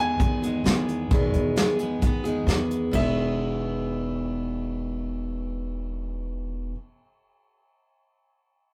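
Jangly and hopeful, this short folk rock and heartland rock excerpt puts a full-bodied picked dreadnought acoustic guitar and a woody pizzicato upright bass up front, under a clear, smooth concert grand piano carrying the melody over an Emaj7 chord. A soft brush drum kit with a punchy kick and medium-tuned snare plays from 0.2 to 3.0 s, and guitar, bass and piano carry on to the end. The rough rehearsal-room recording has a small-room reverb and warm saturation.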